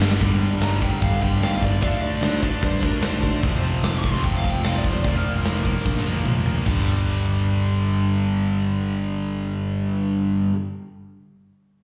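A drum fill from a big, punchy rock kit opens this energetic, anthemic hard rock excerpt, as two bright, picked distorted guitars play the riff over a growly, punchy picked bass, the guitars carrying slapback echo. From 0.6 s a dark, smooth overdriven lead guitar sings a solo line with slapback echo and digital delay, moving over power chords from G5 through D5, F5 and Bb5/F. The up-front drums, with their rolled-off top, deliver another fill before dropping out at 6.8 s, leaving the guitars and bass to carry on, all heard as a live gig through the venue's PA with recital hall reverb.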